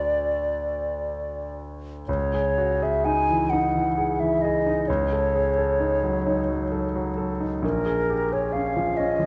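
A mellow, hollow silver flute sings the melody with vibrato through this hazy, mysterious impressionist classical excerpt, moving in a rubato 6/8 at 38-46 BPM, while a clear, intimate grand piano with deep bass and audible action noise sits up front in accompaniment, its harmony drifting from Dmaj7 through C#madd9 and F#m69/C# to A#m7, the duo set in a wet recital hall reverb of 1.4 seconds within a dark, warm production.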